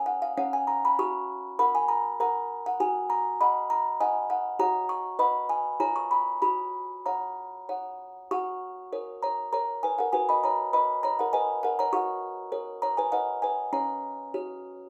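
A classical lullaby for solo music box, innocent and tender, moving at 99 BPM in a straight 3/4 in F# major, cut from a longer piece. The delicate, tinkling box sits up front, its airy plucked tones spanning C#4 to C#6 and tracing gentle harmonies such as F#69, C#7/E# and B/F#, with a new section beginning at 8.3 seconds. A small room ambience and a rough home-demo mix lend the 14.9-second recording an intimate, homemade feel.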